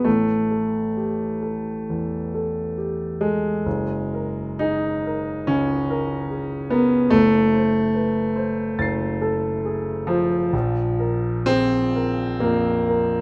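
The rhythm floats in an unhurried 4/4 at 69 BPM, its beats uneven and stretched by rubato, giving this short excerpt a serene, dreamy drift. It is impressionist classical music for solo concert grand piano, which plays alone for the full 13.2 seconds and spans from F#1 up to C7. The piano sounds warm and open, with a deep bass, a long sustain, and a presence that sits up front. The harmony moves from A5 to F#69 near 3.7 seconds, then through F#dim to Bb5 at 10.5 seconds, colouring the single section with shifting shades. A moderate reverb from a large studio surrounds the instrument, adding a sense of space as the fragment unfolds.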